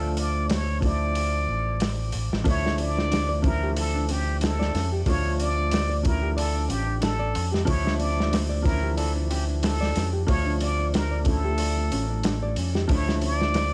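A plunger-muted trumpet carries the melody in a jazz style, its wah-wah tone clear and punchy with scooped notes, roughened by vintage 12-bit sampler grit and trailed by tape echo. This trip hop excerpt moves at a hypnotic, smoky 92 BPM in 4/4 with a light swing on the sixteenths, sitting in D harmonic minor over a Dmadd9 chord. An overdriven fingered electric bass sits up front with a punchy, amped tone, while a woody upright piano supports the harmony with harmonic tremolo and tape echo of its own. A crunchy breakbeat kit comes in at 0.2 seconds, saturated and gritty with a tight kick, a medium-tuned snare, hi-hat and a rolled-off top. At 2.5 seconds a full-bodied, thumb-plucked nylon-string guitar joins in the background with arpeggios through a digital delay, all of it set in a small room with vinyl crackle beneath.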